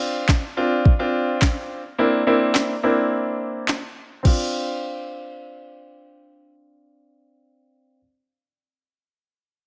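A bright concert grand piano opens this short dance-pop excerpt in D minor at 106 BPM, playing accompaniment chords in the range from Bb3 to F4. The piano's tone is brilliant and polished with deep bass and short sustain, sitting up front while sidechain pumping and a low-pass filter shape it, with a filter sweep running through the opening phrase. A smooth R&B drum kit with an electronic, produced character joins at 0.3 seconds, pairing a soft kick and sharp snare with handclaps and crash cymbal, its tape-tinged sound also placed up front until it stops at 4.4 seconds. The harmony moves from Dm7 to C9 and returns to Dm7 as a new section begins at 4.2 seconds. A moderate echo chamber reverb gives the echo-heavy mix a spacious tail, and the overall mood is energetic and driving in a straight 4/4 feel.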